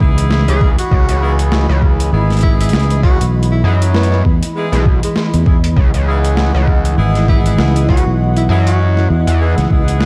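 Gritty and playful, this glitch hop excerpt rides a swung groove in 4/4 over a single C#m9 chord, built on a thumpy, pitched-down kick and a boom bap sampler-style kit with hi-hat and a high-tuned snare, both overdriven and re-recorded in a large room. A growly overdriven fingered electric bass sits up front from the start, and an aggressive, distorted sawtooth synth bass with tube saturation joins it up front at 0.5 s. A smooth analog pad with chorus holds sustained chords in the background with sidechain pumping, alongside clear jazz-style horn stabs that also pump and carry light vibrato and diffuse ambient delay, as a cloudy granular pad drifts very quietly above. Entering at 0.5 s and playing until 8.9 s, a tenor saxophone carries the melody with subtone, scooped notes and vibrato, and the whole mix feels dreamy, soaked in lush hall reverb with vinyl crackle.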